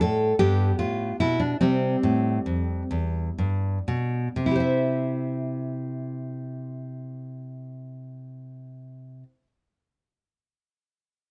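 In a dance-like 6/8 with a free, rubato feel, this short fragment of a baroque-style classical dance for solo nylon-string guitar slows down over its first 4.4 seconds before moving into a new section. The fingerpicked guitar sounds full-bodied and radiant, with fresh strings and an audible finger squeak. It sits up front in a close, detailed and dry recording, and the playing stops at 9.5 seconds.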